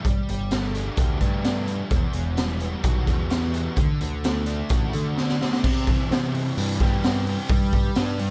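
A dark, reverb-soaked production gives this short rock cut from a longer shoegaze and dream pop piece a hazy, wistful and blissful glow. Up front sits a raw garage drum kit in a small, pumping room, with a boomy kick, a high-tuned snare, gritty saturation, dark cymbals and a rolled-off top, driving a straight 4/4 feel with crash, hi-hat, kick and snare. A double-tracked, compressed fuzz guitar plays the riff, its distortion thickened by analog chorus, while a growling picked electric bass joins at 0.1 seconds, overdriven and blending direct and amped tone. The harmony moves from Gsus2 through Emadd9 to D, and a drum fill at 5.2 seconds leads into a new section at 5.6 seconds, where the chords shift to C and then G5. The whole passage has a warm, blurred weight, with the drums standing out as the most present part.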